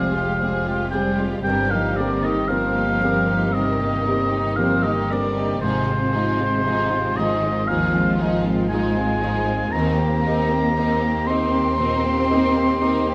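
The recording sits on a moderate scoring-stage reverb, giving this 13.1-second fragment of a longer cinematic film score a lush, spacious glow. At a slow, rubato 58 BPM in 4/4, the hopeful, moving mood unfolds over Fmadd9, Cm7/G, Ab6 and Eb6. A distant, roomy oboe with light vibrato carries the second line up front, while a bowed violin section sings the expressive melody in the background and a smooth, close second violin section adds another line beneath. A rich, very quiet viola section and an intimate concert grand piano, with audible action noise and deep bass, supply the accompaniment, as a mellow, ringing harp plays soft fingerpicked arpeggios. Cellos and double basses, even and bowed with vibrato, anchor the bass throughout, the basses having a smooth top, and all eight parts play together from the opening to the final moment.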